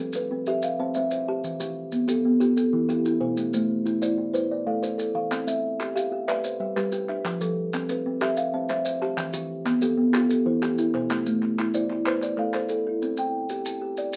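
Southern African traditional music in a rippling, hypnotic mbira-style interlocking cycle at 124 BPM in 12/8 and C major, cut from a longer piece, where an up-front, woody kalimba with a mellow fingertip pluck and a hollow-box kalimba with a short thumb pluck weave arpeggios through a C, Em, Am, G and F progression over grainy maracas, while crisp, close group handclaps join from 5.3 to 12.7 seconds, all set in a modest small-room reverb.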